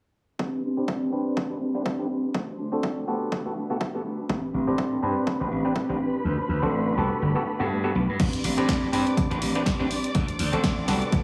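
Funky and nostalgic, this filtered disco house excerpt opens with a dark, fingered electric guitar riff and a punchy, tape-warm electronic kick under a filter sweep, joined by a stringy clav through a combo amp with phaser, then glassy slap bass and bowed strings with vintage 12-bit sampler grit arrive at 4.3 seconds, and after the kick drops out briefly, a punchy analog drum machine brings snare, hi-hat and crash in at 8.2 seconds, with pumping sidechain on most parts inside a lush hall reverb.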